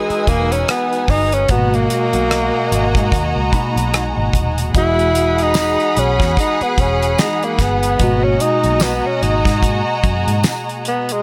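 A polished, lightly reverberant mix puts a breathy, scooped-note tenor saxophone up front, carrying a bittersweet, silky solo over this slow 74 BPM excerpt of lush 1970s-style soul in G# minor, with a swung 16th feel and chords moving between Emaj9 and G#m9. A lush violin section sings a smooth second line while a very quiet, reedy gut-string section holds sustained chords, and a worn, slightly out-of-tune tine electric piano, lightly overdriven with ensemble chorus, accompanies and adds a fill at 3.1 seconds. Underneath, a round, foam-muted electric bass and a dry, damped drum kit with a fat snare, tight kick, hi-hat and rim click keep the groove, joined in the background by a jingly tambourine from 5.5 seconds.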